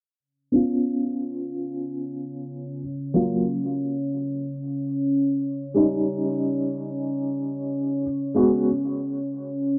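A felt-muted upright piano sits up front in this melancholic, dark trip hop fragment from a longer piece, entering at 0.5 seconds with a soft, boxy, intimate tone, audible action noise, tremolo, tape echo and a low-pass filter. From 1.9 seconds a deep, moody sawtooth-and-sine ambient pad with a sub octave, detuned unison and chorus holds slow-attack chords with a long release alongside it. Both parts move through filter sweeps in free time, washed in a wet spring reverb, over a C#7, D#7 and G#m7 progression with a chordless passage between.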